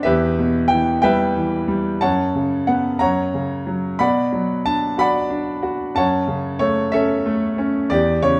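Classical solo piano in a wistful, reflective mood, this short excerpt from a longer piece moves at a lyrical 61 BPM in a gently rubato 6/8. A clear, boxy grand piano sits up front with short sustain, ranging from E2 to B5 as the harmony passes from Em through F#sus4 and F# to Bm and F#m. A moderate recital hall reverb and dark production frame the playing.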